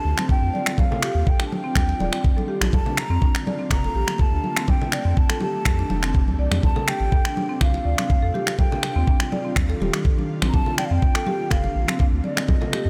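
A knocking, up-front electronic kick drives this hypnotic, spiritual afro house excerpt at 123 BPM alongside a round, deep analog bass and a woody rosewood marimba playing arpeggios with delay, both pumping under sidechain, while electronic finger snaps and bright, damped congas fill out the groove, an ethereal pad with ensemble chorus holds sustained chords in the background, and a breathy, distant jazz flute carries the melody through delay over chords moving from Dm7 to Ebmaj9, Bbmaj7 and F13 in a lush studio reverb.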